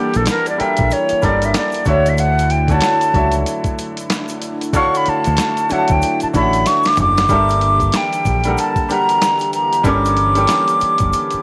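A breathy, close-miked silver concert flute plays an expressive solo up front until 7.3 seconds in this soulful neo-soul R&B excerpt at 94 BPM with a swung sixteenth-note feel, backed by brilliant grand piano, a lush, detuned unison pad with chorus in the background, a round, punchy dub bass, a gritty, pitched-down boom bap kit with a thumpy kick that plays a fill from 6.7 seconds, and a tube shaker with finger snaps low in the mix, in a moderate spring reverb over Gm6 and Dmaj7 chords.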